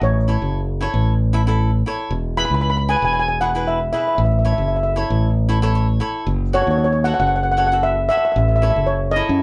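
Festive and bouncy, this short calypso excerpt moves at 115 BPM in 4/4 with a light sixteenth-note swing. A steel pan carries the melody up front, its metallic, shimmering tone made mellow and soft by rubber sticks, and it sounds close-miked, dry and full. Beneath it, a crisp, picked cavaquinho supplies acoustic accompaniment and adds a short fill between 5.5 and 6.3 seconds. A bright, fingered electric bass sits direct and forward in the mix, anchoring the low end. The chords move from A to E, back to A, then to F#m before returning to A, all heard as a band playing live together in a small room with moderate reverb.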